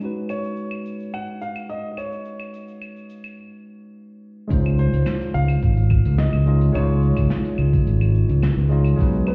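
Warm and sunny, this short sunset chillout excerpt in Db major moves at 107 BPM in a straight 4/4, with a worn, slightly out-of-tune tine electric piano, lightly overdriven and carrying tape echo, accompanying a dark, mellow baby grand melody over a distant, roomy brush kit of claves, hi-hat, shaker and snare, until after a break from 3.4 seconds a growly, up-front overdriven fingered bass and a gritty, thumpy electronic kick arrive at 4.5 seconds as the harmony shifts from Cb69 to Dbmaj9, all heard muffled through a wall in a stone-room reverb.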